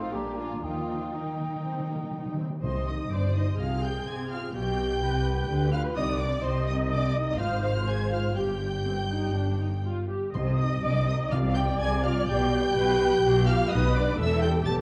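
A rich, expressive violin section carries the melody high above this stormy, restless classical-period movement in C minor, moving quickly at 124 BPM in 4/4 with a rubato feel. A second violin section with portamento, dark violas, woody cellos and smooth double basses fill out the strings beneath sustained chords from a mellow French horn section. A hollow flute, an oboe and a clarinet add brief lines only at the opening, while close, dry timpani sit in the background from 0.6 to 3.3 seconds and again from 10.3 seconds, all in moderate hall reverb with the worn, warbling pitch drift of old cassette tape across this passage cut from a longer piece.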